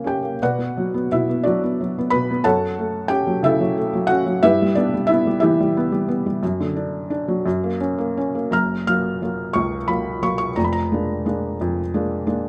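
Classical solo piano in a calm, tender mood, this short fragment of a longer piece moves in a lyrical, rubato 6/8 at a slow, unhurried pace. A felt-muted upright piano plays alone throughout, its soft, mellow tone and short sustain captured up front by close, detailed microphones with little reverb, so the audible action noise adds an intimate quality. The harmony drifts through minor chords before reaching F# and a gentle F#maj7 at 8.5 s, where the music moves into F# major for the closing section.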